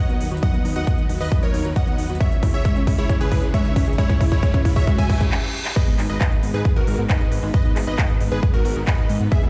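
The recording has the sound of a big sound system filling a bare stone room, with little reverb. This uplifting trance passage, cut from a longer piece, feels soaring and bittersweet over a straight 4/4 pulse. A detuned supersaw stab carries the melody with a filter sweep, and a bright, catchy square-wave lead with a noise layer sits behind it as a second line, while a lush, mellow unison pluck plays arpeggios in the background; all three carry sidechain pumping and tape echo. Beneath them a fat, thick analog bass with sawtooth bite pumps along, and an overdriven, punchy electronic kick sits up front beside a big-room dance kit of crisp hats, handclaps and crash cymbal. The build-up moves from B/D# to C#m, with a very quiet riser and reverse cymbal and drum fills leading into a brief stop at 5.3 seconds before the drop lands on G#m at 5.8 seconds.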